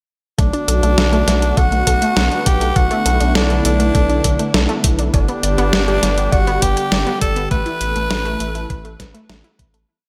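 Synthwave at 101 BPM in B minor, cinematic and moody, where a raspy, gritty tenor saxophone with delay carries a motif-based solo melody over a swirling phased analog pad with sidechain pumping, a bright pluck arpeggio with chorus and a cassette-tape tint drifting against the bar in the background, a round, driving eighth-note analog bass with tube saturation, a detuned 8-bit drum machine backbeat of closed hi-hat and snare in gated reverb, and a thumpy electronic kick, across chords of Bm7, G and Asus2, with a fade-out from 6.7 seconds.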